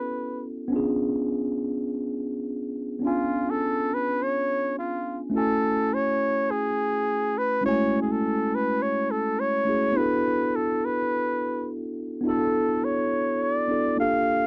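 Smooth and bittersweet, this short soul passage moves with a gentle swung lilt and is cut from a longer piece. A warm flugelhorn carries the melody as a solo voice, sitting up front with a punchy, pop-style delivery, vibrato and scooped notes. Beneath it, a mellow tine electric piano plays the accompaniment, its clean tone heard through built-in speakers and also sitting up front. The harmony opens on A69 and C#7b9 before shifting at 5.3 seconds to F#m9 and then E9sus4. Both instruments play together for the full 14.5 seconds, captured in a dry, close 1970s-style studio sound touched with light reverb.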